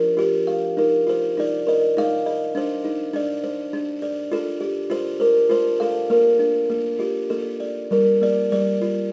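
A buzzing kalimba, woody and ringing, sits up front in a moderate recital-hall reverb as it plays alone through this innocent, sleepy children's lullaby excerpt in Bb major, drifting rubato in 3/4 at about 100 BPM over Ebsus2, Cmadd9, Fadd9 and Bb before turning to Gm7 at 7.9 seconds, just before the cut at 9.1 seconds.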